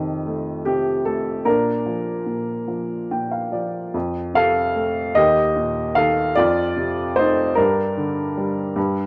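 A warm, woody upright piano carries this brief classical excerpt alone, its open tone sitting up front in a light reverb. The playing is lyrical and calm, with a tender, unhurried rubato that stretches the gentle lilt of its 6/8 metre. The piano spans a generous range, from the low Eb2 up to G5, moving through a progression that opens on F7 and settles onto Bb. Between 2.7 and 3.9 seconds it plays a short fill that leads into a second passage, where the harmony shifts through F, Eb and back to F before closing on G minor. Cut from a longer piece, the fragment ends at 9.1 seconds.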